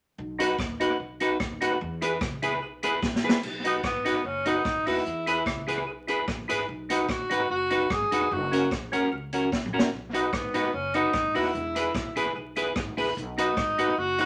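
Ska with an upbeat, bouncy swing, where a woody, growly upright bass starts things off before a twangy clean guitar, a fat percussive tonewheel organ with key click and slow rotary shimmer, and a punchy vintage drum kit with analog delay join in, a drum fill around 3.0 seconds leads to a distant, roomy tenor saxophone melody entering at 3.7 seconds, and the whole fragment sits in a wet room with a layer of vinyl crackle.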